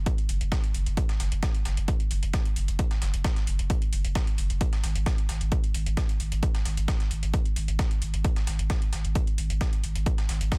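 A straight 4/4 pulse drives this intense, peak-time techno cut from a longer piece, anchored by a punchy, up-front electronic kick. Beneath it sits a deep, thick sine sub bass, saturated with overdrive and rounded by a low-pass filter, holding a sustained low line between F#1 and G#1 as sidechain pumping makes it breathe. Layered electronic hi-hats add a metallic sheen, also pumping with the sidechain, while a sampler-style breakbeat kit contributes gritty, compressed hats and a medium-tuned snare thinned by high-pass filtering. The track moves into its drop at 4.6 seconds and keeps that driving energy through to 10.6 seconds. The sound is dense and heavily limited, with a digital ambience and a small-room character on the kick and hats.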